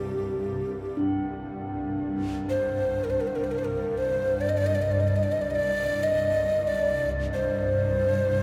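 A breathy, hollow Native American-style cedar flute with a crisp chiff and vibrato sits close and up front, its melody trailed by a diffuse ambient delay, over a cloudy, detuned granular pad drone and the bright, slowly beating metallic ring of a bronze singing bowl struck with a wooden mallet, all set in a vast cathedral reverb that makes this short cut of haunting, spacious world meditation music feel suspended in an echoing hall.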